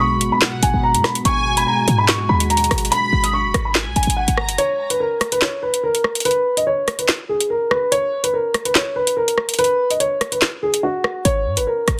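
Drill-flavored hip hop with a half-time feel, this cut from a longer piece sets a dark, cold mood. A mellow, woody upright piano carries the melody up front throughout, while a deep, detuned analog pad with chorus holds sustained chords and a short, punchy 808-style bass with a fast attack anchors the low end until 4.6 seconds. In that opening stretch a lush, distant violin section with vibrato and portamento adds a second line through digital delay. The electronic drill kit enters at 0.2 seconds with handclaps, metallic hi-hats, rim clicks and a woody snare that carries soft clipping. From 4.6 to 11.3 seconds a break strips away the harmony, leaving piano and drums, before the 808 returns under a suspended chord. The mix is dense and heavily limited with light reverb.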